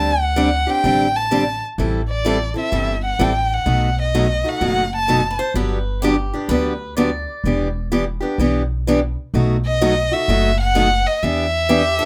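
Fiery and bittersweet, this E minor jazz manouche clip swings at 127 BPM, with an expressive, close bowed violin singing the melody with vibrato and portamento until 5.4 s and again from 9.7 s, over a boxy parlour steel-string guitar accompaniment and a woody, thumpy gut-string upright bass, while a quieter, bright picked swing guitar adds a second line from 5.3 s, all in a small room with moderate reverb.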